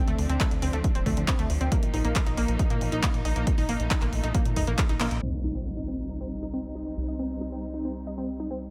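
Driven by a straight 4/4 pulse at 137 BPM, this short cut from an uplifting trance piece in C dorian carries a bittersweet, emotional mood, with a punchy electronic kick arriving at 0.4 s just after an analog drum machine's handclaps and hi-hats, the hats pumping against the sidechain and dulled by low-pass filtering. Beneath them a plucky analog bass, dark and funky with a fast attack and a moving notch, pumps through the low register, while a rich chamber string section holds bowed, vibrato-laden chords. On top, a round, warbling analog pluck spins arpeggios, its detuned, vintage tone thickened by chorus and trailed by digital delay. The harmony moves from Dm7 to Bbsus4, and at 5.0 s a drum fill and band accent lead into a new section where the drums drop away and an electronic impact hits as the chord turns to Cm. From 5.2 s a filter sweep runs on the pluck and across the mix, set in light reverb with an overall low-pass filter that keeps the sound soft-edged.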